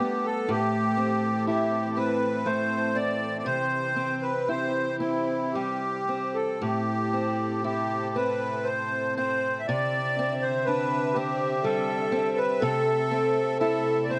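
A rubato 3/4 lilt at 60 BPM carries this tender, wistful Celtic slow air, cut from a longer piece, where a sweet, reedy accordion with light tremolo tuning sings the melody up front over a dark, fingerpicked steel-string parlour guitar, while a soft-attack bowed string section with vibrato holds sustained chords in the background, all in light reverb as the harmony drifts from Am through C and Cadd9 to rest on Am/C at 12.6 seconds.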